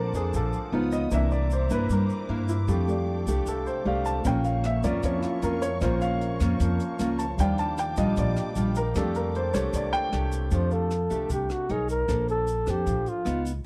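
This breezy, romantic bossa nova excerpt opens with an up-front, natural-sounding baby grand piano taking a solo over fingerpicked classical nylon-string guitar, woody pizzicato upright bass, a grainy, compressed tube shaker in the background and a dark, lush bowed string section holding sustained chords. A dry cocktail drum kit with a punchy kick, hi-hat and rim click joins at 4.2 seconds, and the strings fall away as a breathy, mellow flugelhorn steps up front at 10.5 seconds with a whispered, intimate jazz solo full of vibrato and scooped notes. The excerpt has the close, dry sound of a 1970s studio, with rich major-ninth and ninth chords giving it a warm harmonic glow.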